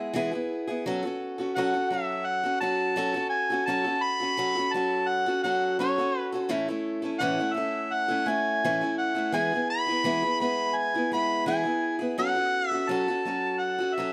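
A straight 4/4 rock feel at 85 BPM opens this hopeful, jangly excerpt, with a bright, boxy parlour-style steel-string acoustic guitar picking an up-front accompaniment through E, F#m and A, tuned slightly high to A4 = 441 Hz. At 1.6 seconds a mellow, vintage-toned pop harmonica takes the solo melody, punchy with light vibrato and scooped notes, set in plate reverb and analog delay. The dark production carries a light reverb overall.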